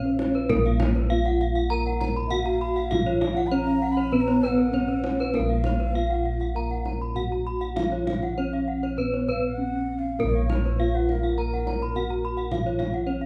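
This Balinese gamelan excerpt, cut from a longer piece, has a shimmering, brilliant mood over a steady, straight pulse. The lead melody comes from a bronze metallophone struck with padded disc mallets, mellow and airy, its paired tuning producing shimmering beats. A second metallophone adds soft accompaniment in the background. Two more metallophones played with horn mallets ring out in higher arpeggios: one is boxy, as if in a small room, and the other is bright. Both also have the beating shimmer of paired tuning. Round, up-front bossed gongs carry the bass, a distant, deep kendang played with soft hands supplies the percussion, and a breathy bamboo bansuri with vibrato and a crisp attack weaves a second line through the ensemble until 12.6 seconds, all captured live in one room with moderate large-studio reverb.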